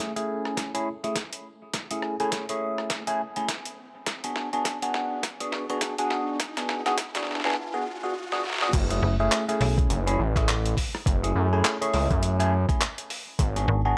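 Swung sixteenths drive this funky, swaggering glitch hop fragment, where a gritty, pitched-down boom bap kit of snare, handclaps, hi-hat, rim click and crash cymbal, anchored by a thumpy, tape-warm electronic kick, builds under bright, bell-like electric piano stabs run through phaser, delay and sidechain pumping, while a very quiet riser swells toward the drop at 8.7 s, when an aggressive, saturated sync-sawtooth bass pushes up front, joined moments later by a snappy, metallic-attack FM bass.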